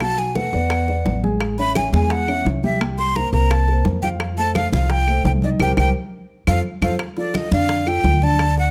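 A lively, danceable Afro-Cuban jazz groove begins with the whole band at once: a breathy, expressive flute carries the melody up front over a woody pizzicato upright bass, while a dark, boxy upright piano plays accompaniment beneath. Tight, high-tuned bongos, background congas and dry claves fill out the percussion, and a drum fill with a band accent from 5.6 seconds leads into a new section at 7.0 seconds. The sound is close and detailed with light reverb, in a short cut from a longer piece.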